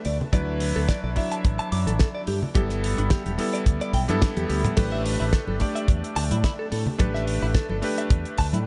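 Groovy and feel-good, this short nu-disco clip moves at 108 BPM in 4/4 with a light 16th-note swing, progressing from D69 to G69 and then A9sus4. An up-front electric grand piano with a cutting, clangy voice carries the accompaniment through 12-bit sampler grit, sidechain pumping and analog delay, while a twangy, compressed clean electric guitar picks a riff bathed in lush chorus and delay. Underneath, a fingered electric bass with an envelope filter, a tight, dry kick, a damped 70s kit with a fat snare that plays a fill at 4.2 seconds, and close congas tucked in the background fill out a small, lightly reverberant room.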